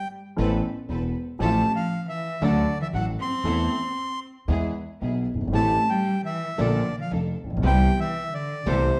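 A rubato feel stretches the 4/4 pulse of this tense, dramatic tango fragment, cut from a longer piece. The bandoneon carries the melody from the very start, its reedy, bright tone close-miked, dry and up front. Beside it, a single bowed cello plays an expressive second line with soft attack, vibrato and portamento. From 0.4 seconds a warm grand piano with long sustain provides the accompaniment, a woody, growly pizzicato upright bass on steel strings anchors the low end, and a lush string section adds smooth, even bowed stabs from a distance. The harmony moves from Amadd9 through D and E to Am7 before closing on Bbmaj7 and Cmaj7, all set in a large studio reverb heard from further back in the room.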